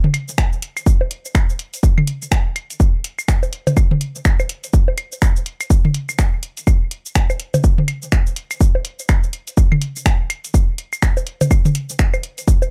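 A dry, tape-warm sound with little reverb opens this short excerpt of hypnotic, clinical techno at 124 BPM in 4/4, swung on the sixteenths. Up front, analog-toned electronic toms, claves and bongos carry a dub echo from the start, joined at 0.1 seconds by a layered house kit of finger snaps, hi-hat and shaker re-recorded in a small room. A punchy, up-front electronic kick arrives at 0.4 seconds and anchors the groove to the end.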